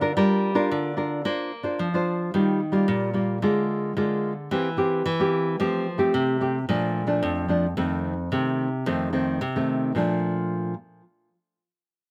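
Recorded outdoors with an open-air clarity and a touch of light reverb, this lively, playful samba features a solo nylon-string guitar, acoustic and classical in tone, warm and thumb-plucked and sitting up front from 0.0 to 10.7 seconds, as it moves from Gm7 through Bbadd9 and Ebadd9 to settle on Bbmaj7 at 10.0 seconds.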